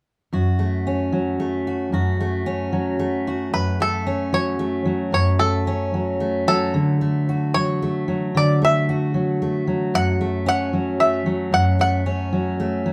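Indie folk in a straight three-beat metre, this brief excerpt from a longer piece carries a yearning, bittersweet mood. A fingerpicked steel-string acoustic guitar opens at 0.3 seconds, its full-bodied jumbo tone sitting up front as accompaniment across a low-to-middle range. At 3.5 seconds a bluegrass banjo enters with the melody, played with fingerpicks, its twangy, percussive attack ringing high above the guitar and also placed up front. The harmony moves from F# minor to D and back to F# minor, giving the building arrangement a wistful pull. The two players sound like a band performing live in one room, wrapped in a wet studio reverb.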